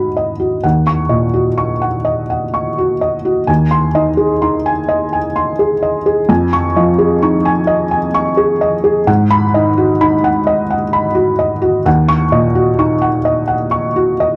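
A felt-muted upright piano carries this short passage alone, soft and mellow, with the quiet clatter of its action audible beneath the notes. The piece is neoclassical minimalist piano in E-flat minor, moving in a slow, rubato 6/8 at about 43 dotted-quarter beats per minute, with an intimate, reflective mood. The harmony drifts from Abm7 to Ebm7, then through Ab/Eb and Dbadd9/F before returning to Abm7 at 9.1 seconds and Ebm7 near 11.9 seconds. The piano spans a range from low Eb2 up to Db6, its short sustain keeping each chord close and natural. Tuned slightly high at A4 = 441 Hz, the instrument sits up front in a dry, close 1970s-style studio sound with little reverb, in a 14.4-second fragment cut from a longer piece.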